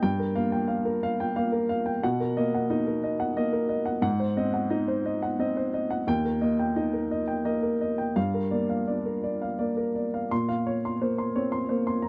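A dry, close, vintage-sounding studio recording captures a solo upright piano, woody and smooth with short sustain and placed up front, playing a melancholic, reflective neoclassical minimalist piece in 3/4 at a rubato 83-90 BPM, moving through Gm7, Bmaj7, Ab7, Eb and back to Gm7 before a shift to Bbmadd9 at 10.3 seconds in this short cut from a longer work.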